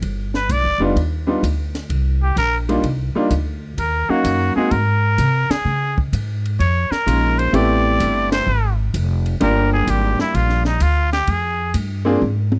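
Woody, thumpy pizzicato upright bass and a compact cocktail kit with dark cymbals, a high-tuned snare and a punchy kick open this swinging small-group jazz excerpt; a nasal, raspy straight-muted trumpet with light vibrato takes the melody at 0.4 s, a brilliant, polished upright piano with long sustain accompanies from 0.8 s over rich extended chords, and the band hits shared accents before a drum fill at 12.2 s, all captured in a dry, close 1970s-style small-room sound.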